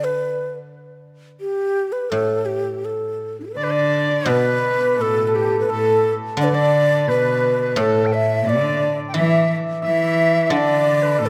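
Chinese traditional chamber music in the A shang mode, pastoral and festive, at a rubato 86 BPM in 4/4, with an up-front, breathy xiao singing the melody over the silvery, ringing fingerpicked guzheng before a bright large dizi with its buzzing membrane, a shimmering hammered dulcimer and a rich, bowed cello join as second lines at 3.6 seconds, all set in a moderate concert hall reverb captured by close, detailed microphones in this short excerpt from a longer piece.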